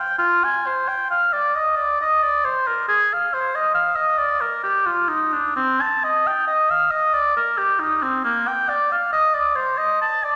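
Flowing and grave, this brief classical excerpt is a baroque-style fantasia in triple metre for unaccompanied oboe, played with a free, rubato feel. The oboe carries the whole 10.4 seconds alone, close-miked and up front, its warm tone touched with light vibrato as it moves between Bb3 and A5. A wet scoring-stage reverb with a long tail surrounds the line, lending it a spacious, resonant setting.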